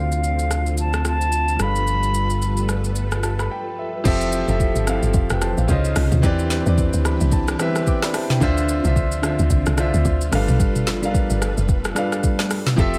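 Deep and late-night in mood, this amapiano excerpt opens under a filter sweep, with a pure concert flute line, softened by a low-pass filter and tape echo and shaped with vibrato, that appears only briefly at the start. An intimate, vintage-toned grand piano carries the chords throughout, its action noise audible and its low end deep, and it adds fills along the way. Behind it, a mellow string machine cello patch holds full sawtooth chords with a sub octave, colored by phaser and ensemble chorus. A round, direct fingered electric bass sits up front until a short break at 3.5 s, while a produced R&B drum kit with a soft kick, woody snare, metallic hi-hats, rim clicks, shaker, crash and toms sounds re-recorded in a small room. At the drop at 4.1 s, a dark, punchy FM log drum bass enters with a fast attack and a decaying noise-layered tail, and light digital ambience surrounds the whole mix.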